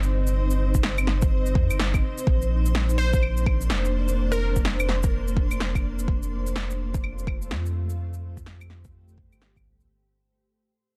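Melancholic and ghostly, this future garage excerpt moves at 126 BPM in 4/4 with a 62% swing on the sixteenths, tuned slightly flat to A4 = 437 Hz. A cloudy, detuned granular pad holds slow-blooming chords through Cm, Bbadd9 and F, its own reverb blurring the harmony while sidechain pumping makes it breathe alongside a round, up-front sine sub bass that pumps the same way. A layered electronic shaker, woody snare and claves run throughout, joined at 0.7 seconds by a deep, forward electronic kick. At 3.0 seconds a glassy, crystalline wavetable pluck flickers briefly through chorus and analog delay, its sub octave and filter sweep adding a bright digital edge. The mix is dry apart from the pad's reverb, pressed into a dense, heavily limited modern master with a faint mains hum beneath, and the fragment begins fading out at 4.8 seconds.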